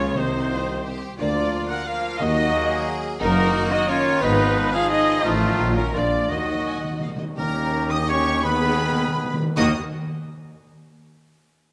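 A moderate concert-hall reverb fills this restless, urgent classical excerpt in 3/4 and Eb minor, where a lush, background violin section carries the melody at a rubato 152-180 BPM over a pure flute, a focused studio violin section and a dark, portamento cello section, with rich violas accompanying, bright trombones and shadowy French horns sustaining chords, a mellow, vintage trumpet adding punchy stabs, double basses and tuba holding the bass, timpani fills from 6.3 seconds as the tempo slows, and a clear, distant oboe entering at 7.4 seconds.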